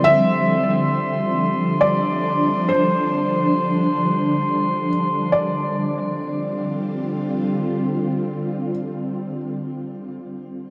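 An ethereal, full-bodied pad sits up front in this luminous, serene ambient excerpt in 3/4, holding sustained chords that move from Csus24 to Bb at 5.3 seconds, thickened by ensemble chorus and shimmer reverb. Above it, a felt-muted upright piano carries a soft, intimate melody with audible action noise and tape echo, while a very quiet, dark pluck traces arpeggios. A glassy, beating glass harmonica adds pure texture until 5.4 seconds, all set in a cathedral-like reverb with a cassette tape sound.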